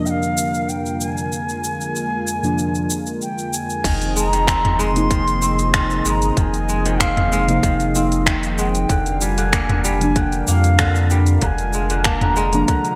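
A meditative organic downtempo passage opens with an airy, reedy bansuri melody carrying delay, floating over muted, felt-like synth keys that are under a filter sweep and a smooth, detuned analog pad, both keys and pad shimmering with chorus and sidechain pumping, while a crisp-hatted organic electronic kit of cabasa, finger snaps, hi-hat, toms and crash cymbal sits up front in gated reverb; at 3.8 seconds a ringing, fingerpicked kora with delay, a round sine sub bass with sidechain pumping and a tight, tape-warm electronic kick join, all wrapped in plate reverb and a bright 1980s-style digital sheen.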